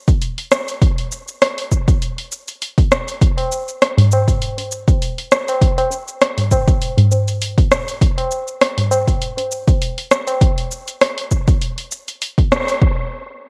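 A punchy, overdriven electronic kick drum drives this meditative, earthy downtempo excerpt at 100 BPM with a light swing, alongside an up-front deep house kit of hi-hat, rim click and shaker, while a low-tuned, ringing tabla sits close and dry from 3.4 to 10.4 seconds, all within a moderate spring reverb and cassette home-recording character, ending on a band accent at 12.5 seconds.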